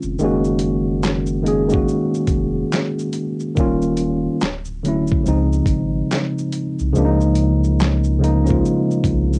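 A worn, slightly out-of-tune tine electric piano, lightly overdriven and softened by cassette tape and a low-pass filter, sits up front over a deep, round sine sub bass and a gritty, compressed sampler-style drum kit of thumpy kick, medium-tuned snare, handclaps, hi-hat and shaker in this nostalgic, dreamy lo-fi hip hop excerpt with a swung 4/4 feel, drifting through chords such as Gb6, Dmaj9 and Db69, while a very quiet, close finger snap appears from 4.4 to 8.0 seconds within a moderate booth ambience and a dusty home-cassette sound.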